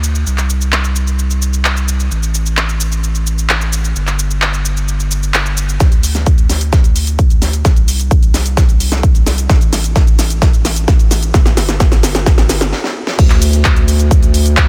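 A punchy, layered electronic kick drum sits up front, arriving at 5.8 seconds to drive this powerful, emotional festival progressive house excerpt at 130 BPM in a straight 4/4. Beneath it, a deep, thick saturated sub bass with a sine-like core, fast attack and sustained notes holds the low end between G1 and D2, pumping from sidechain compression throughout. A big-room dance kit brings a huge snare along with handclaps, hi-hat, shaker and crash cymbal, all high-pass filtered to keep the percussion crisp and forward. From 5.8 seconds a build-up unfolds as a long drum fill, ending in a brief stop at 12.7 seconds before the drop lands at 13.2 seconds. The mix is dry, with little reverb and a loud, produced sheen.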